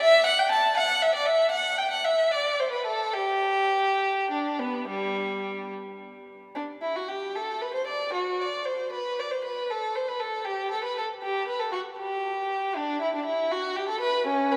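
This is a baroque-style classical suite movement for unaccompanied violin in G major, cut from a longer piece and tuned to A4 = 439 Hz. Its mood is radiant and dance-like, moving in 12/8 at 68-81 BPM counted in dotted quarters, with a flexible rubato feel. A single bowed violin plays solo from 0.0 to 14.6 seconds, ranging from G3 to A5 with a rich, smooth, even tone and vibrato. The violin sits up front yet carries a distant quality, wrapped in a wet cathedral reverb with a 4.7-second decay. The opening section gives way to a new section at 6.6 seconds, which carries through to the end of the passage.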